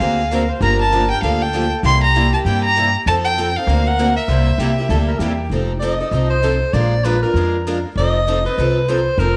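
A smooth, bowed violin with vibrato carries the melody of this lively, playful gypsy-jazz swing at 196 BPM in F mixolydian, over a warm soprano saxophone second line, two bright, boxy picked parlour steel-string acoustic guitars with audible finger squeaks (one set back in the mix), and a dark, woody, thumpy pizzicato upright bass on gut strings up front; the violin drops out at 5.3 seconds and the saxophone takes a light-vibrato subtone solo from 5.5 seconds, the whole excerpt sitting in the wet reverb of an echo chamber with small-room ambience.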